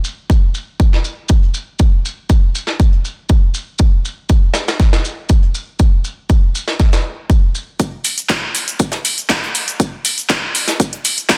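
A dense, heavily limited modern master set in small room ambience carries this expansive, bittersweet house fragment at 120 BPM in a straight 4/4. A soft brush drum kit with a medium-tuned snare, hi-hat and shaker opens the piece, its hats pumping under sidechain and its snare softly clipped, and a punchy, tape-warm electronic kick sits up front from 0.3 seconds. At 7.8 seconds a build-up begins as a layered house drum kit joins with handclaps, metallic pumping hats and shaker.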